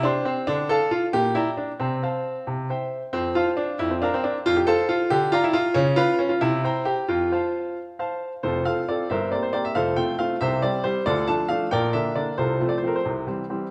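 This classical-period piano sonatina, cut from a longer piece, is cheerful and graceful, moving in a 6/8 metre with a straight feel. A solo grand piano carries the whole passage from 0.0 to 13.7 s, spanning F1 to C6, its tone bright and brilliant with an open character and short sustain. The piano sits up front, set within a wet recital hall reverb that lends the notes a sense of space. The opening section gives way to a return of the same material at 8.4 s, and the harmony moves through a mix of triads, inversions and open fifths, with a colourful Db7 at 5.8 s slipping into C7 before settling home on F. The instrument is tuned to A4 = 437 Hz.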